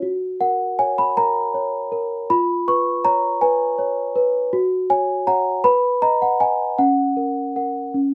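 A classical lullaby excerpt in F# major, innocent and tender, where a solo celesta sways gently in 6/8 at a slow 53 BPM, its bell-like, sweet, mellow tone sitting up front in a small room with moderate reverb as the harmony moves from F# through C#7 and B before settling on F#/C# at 6.8 seconds.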